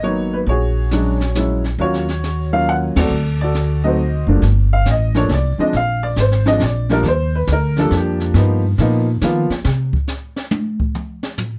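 Smoky and cool, this short jazz piano trio excerpt swings in 3/4 at 137 BPM, settling into G minor from 4.4 seconds as a boxy, up-front upright piano carries the melody and a solo over a woody, pizzicato upright bass with steel strings. A brushed drum kit with dark cymbals, a high-tuned snare and a boomy kick enters at 0.5 seconds, the band hits an accent at 2.9 seconds, and the drums take a solo from 9.7 seconds over a harmonic break. The sound is dry and close, with a small-room naturalness and a rolled-off top end.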